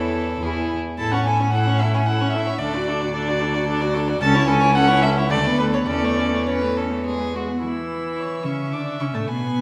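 A reverberant recital-hall sound, caught in a church or concert hall, frames this lively, spirited classical-period movement for string quartet in triple time, a fragment of a longer piece played with a flexible, rubato feel. A distant, nasal first violin carries the melody above a close second violin with an airy bow, while a rich viola with light vibrato supplies the accompaniment and an up-front, dark cello with a smooth top anchors the bass. All four period instruments are gut-strung and bowed by single players, and a new section begins at 7.6 s.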